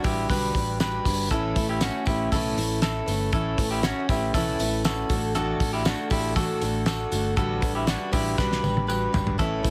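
A breezy, bright stretch of jangly indie pop at 119 BPM in A mixolydian opens with a full-bodied jumbo steel-string acoustic guitar, picked with audible finger squeak, alongside slightly broken-up, lo-fi arpeggios from an electric guitar through a small old amp sitting up front, a dark, round, foam-muted vintage fingered bass, a cloth-damped, thuddy small-room drum kit with a fat snare, tight kick and gritty, rolled-off top, and a very quiet jingly tambourine, moving through Dadd9/A, Aadd9 and Gmaj7/A toward a drum fill at 8.4 seconds, the mix carrying a heavily compressed radio-like sound.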